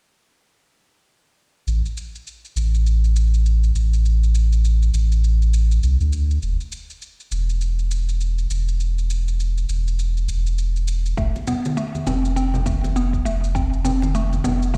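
Played over a big sound system in a bare room with large studio reverb, this mystical, earthy organic downtempo fragment, cut from a longer piece, opens at 1.7 seconds with a round, sine-like sub bass sitting up front under a filter sweep, beside a faint, produced electronic shaker in a swung sixteenth feel. At 11.2 seconds a woody, mellow FM mallet pluck arrives with arpeggios coloured by chorus, phaser, cassette tape and digital delay, alongside a deep, layered electronic kick drum. Congas played with soft hands, with a bright, saturated acoustic tone, join at 11.4 seconds.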